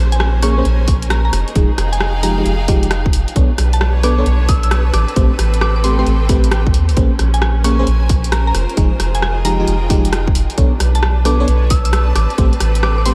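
A deep, round sub bass and a bright, lush string section pumping against the sidechain open this bouncy, moody two-step UK garage excerpt at 133 BPM with a swung 16th-note feel, soon joined by a woody mallet-like pluck melody with chorus and tape echo, house hi-hats and rim clicks, glassy bell-like FM electric piano stabs through a low-pass filter, and a punchy electronic kick entering at 0.9 seconds, all over minor-ninth chords from Bbm9 through Fm9, Bm9 and Am9 in light digital ambience.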